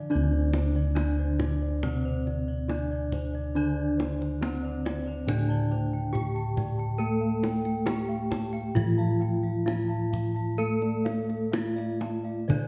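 Deep bossed gongs carry the bass at the front of this serene, ceremonial Javanese gamelan passage, their round, full bronze tone close and dry, sounding up front. Above them, a bronze metallophone plays the melody in the middle register with horn mallets, dark and smooth, its paired tuning producing shimmering beats, while a lower metallophone struck with padded disc mallets adds a mellow, soft accompaniment with the same shimmer. High arpeggios ring out from a second set of bossed gongs, bright and airy, and from a metallophone played with a wooden mallet, both sitting quieter in the blend. A kendang joins at 0.5 seconds with a tight, hard-handed acoustic sound in a small-room setting, and the beats fall slightly unevenly in a slow four. The whole ensemble sits in a moderate recital-hall reverb, and the music is a short cut from a longer piece that remains in a single section throughout.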